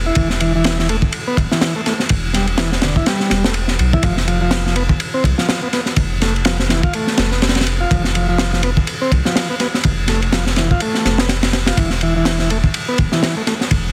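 A heavily compressed, radio-like sound with light reverb and a small room ambience frames this raw, energetic breakbeat excerpt, cut from a longer piece, which moves with a 16th-note swing in 4/4. The crunchy breakbeat drum kit sits up front, with a punchy kick, a high-tuned snare and dark ride cymbal, its acoustic tone smooth and rolled-off at the top. Beneath it, a saturated sub bass holds the floor with a deep, thick, sine-like tone, fast attack and sustained notes running from the start to 13.9 seconds. A vintage combo organ plays a reedy, clean riff through a delay, entering at 0.1 seconds and stopping at 13.5 seconds. The harmony sits on E minor before moving to F at 4.0 seconds, and the chords drop out at 11.8 seconds while the parts play on.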